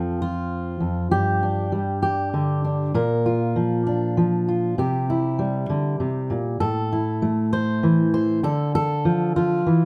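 A fingerpicked steel-string dreadnought guitar sits up front with a dark, full-bodied tone in this gentle, peaceful folk excerpt in 6/8, moving through F, G5, Bb, C, Am and Dm under a light reverb.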